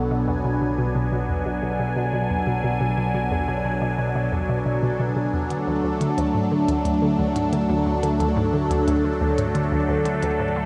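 A phased analog pad leads this hypnotic, mysterious piece of ambient, sequencer-driven space music, its swirling, bright sawtooth chords sitting up front with phaser and chorus over a Bm7 harmony in B dorian. Beneath it, a hollow square-wave pluck bounces through a low, nasal riff, its detuned tone carried by chorus and tape echo. A fat, thick analog bass holds the bottom in the background, and a very quiet bubbling texture of random filter steps hovers on a single high A4. At 5.5 s the harmony moves to D and a minimal electronic drum kit enters with clicky hi-hats and toms, touched with tape echo and kept low in the mix. The steady 89 BPM pulse in 4/4 is bathed in a long plate reverb, giving this short excerpt a dreamy, drifting sound.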